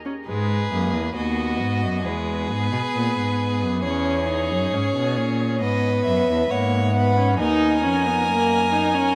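Lively and elegant, this baroque-style fugue for string quartet opens with a rich, distant viola at 0.1 s before a bowed violin melody, a clear, smooth-topped second violin line and a focused, up-front cello bass all join at 0.3 s, each single player singing with vibrato inside a vast, echoing cathedral space in an excerpt cut from a longer piece.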